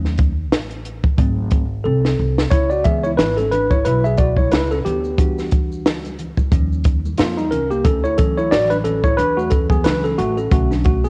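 Jazz-hop with a smooth, warm mood and a swung 4/4 groove, cut from a longer piece and heard through the light reverb and small-room ambience of a home cassette recording. Up front, a worn, slightly out-of-tune tine electric piano carries the solo over rich jazz chords, supported by a woody, thumpy pizzicato upright bass on gut strings with transformer saturation, while a dry compact cocktail drum kit with a punchy kick and high-tuned snare brings 12-bit sampler grit and cassette tape character, and plays a fill at 1.8 seconds. From 2.5 seconds, ringing maracas and congas played with soft hands sit in the background.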